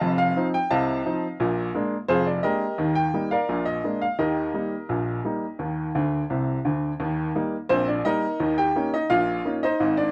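A bright upright piano carries this short ragtime passage alone, its woody, polished tone sitting up front in a dry, close studio sound with a 1970s character. The mood is playful and cheerful, moving in a straight two-beat metre across a span from deep bass notes up into the upper treble. Its harmony travels through dominant-seventh chords that resolve home, giving the strain its buoyant, turn-of-the-century lilt. A piano fill from 5.9 to 7.0 seconds links the opening strain to its repeat, which begins at 7.0 seconds. The clip is cut from a longer piece and ends at 10.1 seconds.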